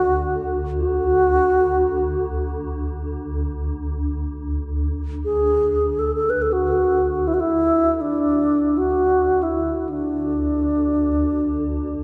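The music moves in free time, free of any steady pulse or metre, in an unhurried, breathing flow that suits this calm, peaceful piece of world meditation music in D lydian. An alto flute carries the melody from 0.0 to 12.0 seconds, moving between D4 and B4 with a pure tone, vibrato and a crisp attack. It is close-miked, expressive, sits up front in the mix and is touched with delay. Beneath it, a swarming drone holds a low D2 throughout: a detuned, granular sine texture with a slow attack and long release that keeps evolving and carries a tense edge under the serenity, set softer than the flute and bathed in its own built-in reverb. The whole excerpt sits in a wet church reverb with a 3.6-second decay and a dark, warm production, so this short passage, lifted from a longer work, feels spacious and contemplative.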